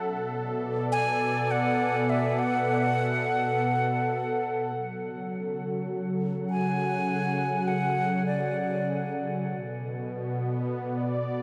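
Meditative and deep, this free-time ambient excerpt in F# minor rests on a smooth, warbling analog pad, its detuned sawtooth tone carrying a vintage chorus and a slow attack as it holds sustained chords moving from Bm7 to F#m and back to Bm7. A breathy, close-miked concert flute carries a straight-toned melody from 0.9 to 9.1 seconds, its soft attack trailed by dub echo. Both parts sit up front inside a huge, wet reverb with a long 4.7-second decay.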